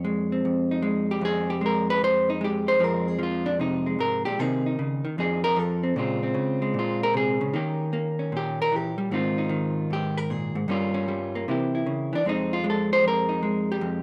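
A vintage hollow-body jazz guitar carries this 14-second cut from a longer solo jazz performance alone, its clean, picked electric tone dark and sitting up front from 0.0 to 14.0 seconds. The mood is moody and late-night, set in F minor at 152 BPM in 4/4 with a swung eighth-note feel. The guitar ranges from F2 up to C5, moving through a harmony that starts on Fm7, passes through Bbm9, Eb7b9 and Ab69, and turns through Gm7b5 and C7b9 before landing back on Fm7 at 12.2 seconds. Light reverb gives the instrument a touch of space, while the rough home-demo mix keeps the sound raw and unpolished.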